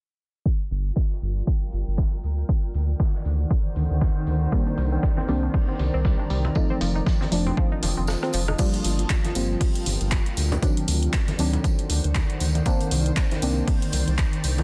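Deep house at 118 BPM in G minor, this excerpt from a longer piece has a deep, smooth mood, its swung sixteenths riding a Gm7, D7b9, Cm9 and F7 progression. An overdriven analog kick sits up front beside a round, dark bass, with a punchy analog drum machine adding crash, handclaps, hi-hat and rim click, while a natural country kit of hi-hat, snare and tambourine and ringing, hard-hand congas from 5.2 seconds stay in the background. Two pads breathe with sidechain pumping: a moody, detuned ambient pad with chorus and its own reverb, and a cloudy, blurred granular pad with a mellow, full-bodied glow. From 4.5 seconds a soft chord stab with ring modulation, a moving notch, cassette-tape colour and dub echo joins, alongside a nasal, bright analog pluck whose arpeggios with phaser and dub echo run until 8.5 seconds. A filter sweep runs through the whole first half, then the kick drops out for a drum fill just before the second half begins at 8.6 seconds. 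The mix is dense and heavily limited, set in studio reverb with a low-pass filter over the whole.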